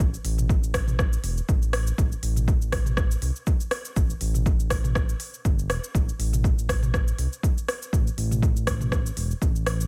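A driving afro house groove at 121 BPM in 4/4, with a light 55% swing on the sixteenths, runs through this short excerpt cut from a longer piece in A minor pentatonic. A punchy, layered electronic kick sits up front, carrying a touch of small room ambience that gives it some body. Around it, an electronic afro-pop kit adds cabasa, smooth hats, rim clicks and toms, set lower in the mix with the same small room feel. A dark, sustained synth bass built from sawtooth and square waves glides between notes from E1 to C2, with a fast attack and sidechain pumping. The overall sound is dry and close, lending the spiritual mood a focused drive across its 9.9 seconds.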